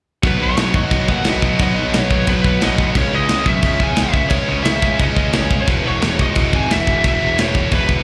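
A rowdy, rebellious punk rock fragment bursts in at 0.2 seconds with a bright, double-tracked overdriven rhythm guitar riff, a growly fuzz-drenched picked bass and a tight metal drum kit with crisp cymbals, crash, kick and snare, all pushed up front. A dark, high-gain lead guitar joins almost at once with a distorted melody dressed in slapback and tape echo, riding over the changes from B to C#m to E5. The whole thing sounds like a live club gig heard through the venue's PA.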